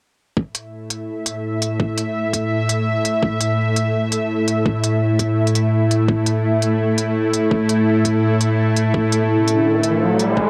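Spacious and heavy, this half-time drum and bass passage, cut from a longer piece, is built on a tense, bright, string-like sawtooth drone that holds sustained A5 chords up front, with a slow attack, vibrato, a noise layer, built-in reverb and sidechain pumping. A knocking, high-passed electronic kick sits up front beside crisp hi-hats re-recorded in a small room, together driving the swung half-time groove, both carrying a tape-warm cassette tint. At 9.5 seconds an electronic riser enters, all within a modest studio ambience with a home-recorded feel.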